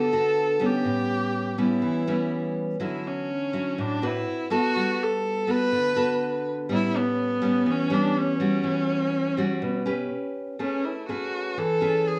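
Relaxed and romantic, this short bossa nova excerpt, cut from a longer piece, moves at an easy pace in a straight four-beat feel. A single bowed viola carries the melody up front, its tone smooth and even with gentle vibrato and a silky top end. Beside it, a classical nylon-string guitar fingerpicks the accompaniment, full-bodied and warm with fresh strings, and an occasional finger squeak adds an intimate touch. The harmony drifts through lush extended chords such as Gmaj9, A9 and Dmaj9, settling on a plain G before turning to Amaj9 as a new section begins at 10.6 seconds. Both instruments sit close in a small room with moderate studio reverb, giving the recording a cozy, softly glowing warmth.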